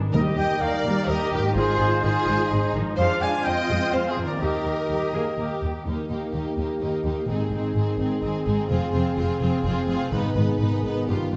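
A straight three-beat pulse carries this cinematic, heroic adventure cue, which feels adventurous and soaring as it is cut from a longer piece. A lush violin section sings the expressive melody over a smooth, even second violin line, while a warm viola section, ringing fingerpicked concert harp arpeggios, and woody, dark cello and double bass sections fill out the accompaniment and low end. A tight, mellow trumpet section punches out stabs until 5.6 s, and a French horn section with light vibrato takes over with sustained chords from 5.9 s. Close, dry timpani strike in the background at the opening and again as the horns arrive, while the harmony moves through Eb, Ab and Fm before turning to Ab minor near the end. Everything sits in a wet scoring-stage reverb with a dusky, rounded production that keeps the top end soft.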